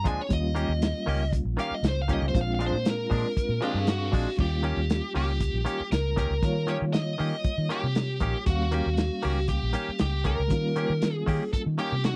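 Laid-back and swaggering, this short straight-eighth soul blues cut from a longer piece opens on a biting, overdriven lead guitar solo that carries the melody for its first 4.4 seconds over a move from Eb7 to Bb7 and back to Eb7. A reedy electric piano with light overdrive and tremolo fills out the accompaniment, while a bright, twangy clean guitar recorded direct adds compressed stabs. Underneath, a round, foam-muted fingered bass sits up front and a muffled soul drum kit with dark cymbals and a tight kick keeps time, all in a dry, close 1970s-style studio sound.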